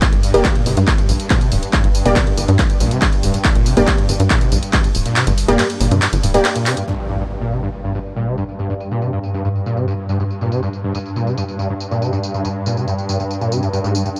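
A dark, hypnotic stretch of driving peak-time techno opens with a squelchy, resonant overdriven acid bass riff with distortion, chorus, tape echo and cassette grit, a swarming, warbling drone that evolves beneath it, and a punchy electronic kick sitting up front. A dry analog drum machine adds crash and ride cymbals, handclaps, hi-hat and tambourine, its hats, cymbals and percussion filtered and pumping against the kick. Moments later, a tight, mellow sequencer bass and an aggressive, thick rave stab with chorus, reverb and tape echo join to push the straight groove forward. The kick falls away at 4.8 s, and the sequencer bass and stab stop at 6.4 s. After a drum fill, an electronic impact hits at 6.9 s, and the acid bass, drone and filter-swept drums carry the rest of this gritty, hardware-toned section.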